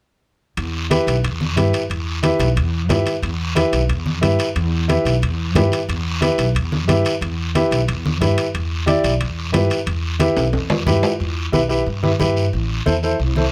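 A straight, danceable cumbia groove in 4/4 drives this fragment of a longer piece, with raspy guiro, bright low-tuned congas and ringing metal-shell timbales, a drum fill arriving at 10.4 seconds, beneath a dark, thumpy pizzicato upright bass on gut strings and a woody, natural upright piano accompaniment up front, set in light reverb as the harmony moves from Em to Am at 12.5 seconds.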